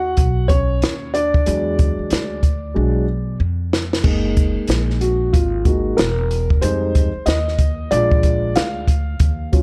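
A dark, warm studio reverb wraps this cool jazz-hop excerpt at 93 BPM in a swung 4/4, where an intimate, mellow upright piano with boxy tone, audible action noise and long sustain sits up front over a thumpy, woody pizzicato upright bass on gut strings, while a compact cocktail drum kit with punchy kick, high-tuned snare, hi-hat and crash enters at 0.2 s and plays a fill from 2.8 to 4.0 s.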